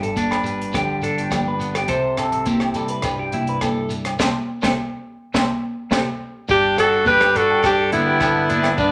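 A wet, roomy mix carries this danceable, warm highlife guitar band excerpt at 104 BPM in G major, where a clean, fingered semi-hollow electric guitar and a twangy, slightly broken-up guitar playing phaser-tinged arpeggios ride over woody pizzicato upright bass, a dry cocktail drum kit with punchy kick and high-tuned snare, close thick-skinned congas, grainy shekere and ringing agogo bells, before a band accent and drum fill lead to a bright, up-front alto saxophone melody with a clear, scooped trumpet second line at 6.5 seconds.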